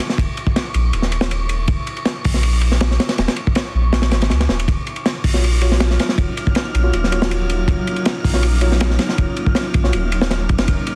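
A crunchy, saturated breakbeat kit with a tight kick, medium-tuned snare and dark cymbals sits up front alongside a round, deep dub sub bass, with an airy, wind-like noise layer in the background, in this dark, raw drum and bass excerpt at 160 BPM in Eb minor, before worn, slightly out-of-tune electric piano stabs with overdrive, 12-bit sampler grit and dub echo arrive at 5.3 seconds, followed by a blurred, cloudy granular pad at 5.6 seconds, all under a dense, heavily limited master with vinyl crackle.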